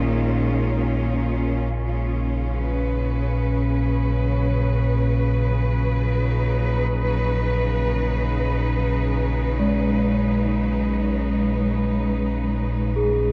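Desolate and dark, this excerpt of dark ambient drone drifts in free time, with a deep, ominous rumbling drone and a rich, lush cello section holding sustained bowed chords with vibrato, moving from Bbm to Abmadd9/Bb as the cellos fade out and a filter sweep passes over the drone. At 9.6 s a gamelan-type bronze metallophone enters with mellow, ringing arpeggios struck with padded mallets and trailed by delay. A huge ambient reverb and worn, warbling cassette tape pitch drift lend the whole a murky, decaying haze.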